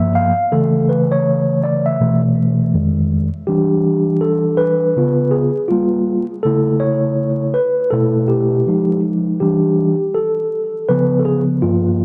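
Swung sixteenths in 4/4 give this smoky, mellow hip hop passage, cut from a longer piece, its gentle sway as a solo tine electric piano, clean and up front through its built-in speakers with an analog delay, moves through chords such as Gm7, B7sus4, Em7 and C#7 over 12.0 seconds, shifting into a second section at 3.5 seconds, framed by light digital reverb and a dry, gritty hardware sound flecked with vinyl crackle.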